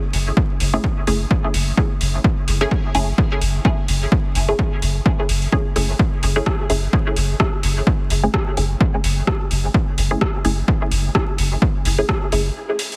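Dub techno at 128 BPM in F# minor, meditative and hypnotic, this excerpt rests on a single F#m9 chord as a clean, dark sine sub bass and a filtered, detuned dub chord stab both pump with sidechain compression beneath the punchy, overdriven electronic kick up front, while a deep house kit adds metallic hats and rim clicks re-recorded in a large room, the wave-folded stab sweeps through its filter with phaser and dub echo, the whole mix carries a heavily compressed radio sound with vinyl crackle, and a brief break arrives at 12.6 seconds.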